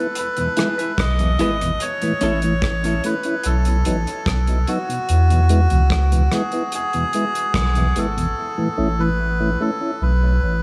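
Laid-back and spacious, this short dub reggae excerpt in E major at 73 BPM pairs an up-front, reedy, breathy melodica lead carrying dub echo with a dark, lightly overdriven tonewheel organ turning through a slow rotary speaker, a deep, round sine sub bass entering at 1.0 seconds, a dry damped 70s drum kit with tight kick, hi-hat and rim click, and a brief twangy clean electric guitar in the background from 0.6 to 2.4 seconds, as the chords move from E through A and B before the drums drop out at 8.4 seconds and the cut closes on Asus2 in light reverb.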